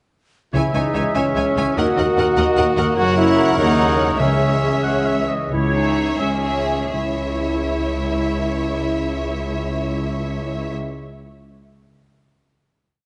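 A wet, lush scoring-stage sound carries this short, swashbuckling heroic adventure cue in C# dorian, lilting in 6/8 at 79-101 BPM, where a rich, expressive studio violin section sings the melody over background symphonic violins and a viola counter-melody, a distant cello and soft-attack double bass section, a mellow French horn section, a clear trumpet doubling the tune, a bright, tight trombone section, a pure, hollow flute at the octave, a clear oboe, a dark clarinet, a ringing, very quiet harp and timpani strokes, the brass, flute and oboe dropping out around 5.3-5.5 s as the tempo slows from 3.6 s into a final chord from 6.9 s.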